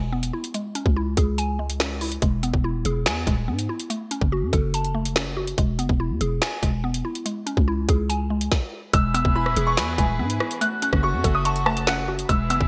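Bright, 1980s-style digital production with light reverb frames this dark, ominous drill excerpt at 143 BPM in a half-time 4/4 feel, moving between E, C#m and F#m. A round, warbling FM synth pluck with chorus and a growling, buzzy 808-style bass sit under an up-front electronic drill kit that enters at 0.2 seconds, with a hard-clipped kick, woody snare, metallic hats, finger snaps and rim clicks in gated reverb. At 8.9 seconds a brilliant, slightly detuned upright piano takes the melody with delay, over sustained chords from a chamber string section with a reedy, gut-string tone and light vibrato.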